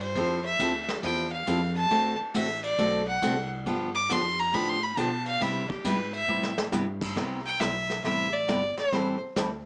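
A biting, bright fiddle with light vibrato and an earthy edge plays a solo from the very start of this cheerful, swinging western swing excerpt, set over woody pizzicato upright bass and a vintage brush drum kit with dark cymbals and a punchy kick. A picked steel-string acoustic guitar joins up front at 0.2 seconds as accompaniment, moving through Fmaj7, D7, G7 and Cmaj7. A brief drum fill at 6.3 seconds leads into a new section that touches on Am7, and light reverb with a small-speaker sound gives the mix a vintage character.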